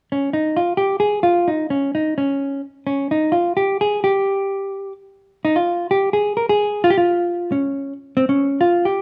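A dark, clean hollow-body electric jazz guitar sits up front and carries the solo from 0.1 s in this brief, charming and nostalgic musette cut from a longer piece, swaying in a straight 3/4 at 130 BPM, shifting into a new section at 5.4 s and ringing through a moderate large-studio reverb with the open feel of a band playing live in one room.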